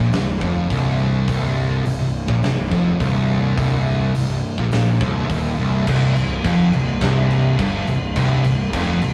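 A dark, up-front fuzz guitar drives this heavy, ominous stoner and doom metal excerpt, backed by a second thick fuzz guitar, a growly, bright overdriven fingered bass and a big, mid-forward rock drum kit with a tight kick and a rolled-off top end, before a biting, double-tracked overdriven guitar joins the riff at 5.9 s, all captured as a rough rehearsal-room recording with a moderate small-room reverb.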